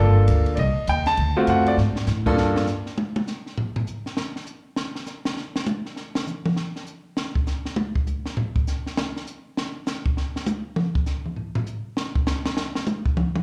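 Swinging in four, this moody, late-night jazz trio fragment, heard live through a club PA with light reverb, opens with a polished, present grand piano solo carrying the melody with slapback echo over woody, growly pizzicato upright bass, with the compact cocktail kit, dark and smooth with a high-tuned snare and punchy kick, joining at 0.3 seconds and adding a short fill near 1.8 seconds. The bass stops at 2.4 seconds, and the kit takes a drum solo that runs to 13.4 seconds.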